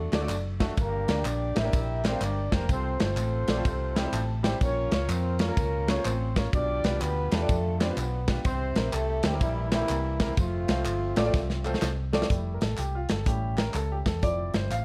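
A mellow horn section with light vibrato carries the melody over a dark, round hollow-body electric bass as this reverent yet jubilant uptempo gospel excerpt in F major swings along at 125 BPM, joined by a clear, polished baby grand piano, an acoustic drum kit with a tight kick and background handclaps and tambourine, with a piano fill at 3.9 seconds and a drum fill leading into a piano solo at 12.3 seconds after the horns fall away.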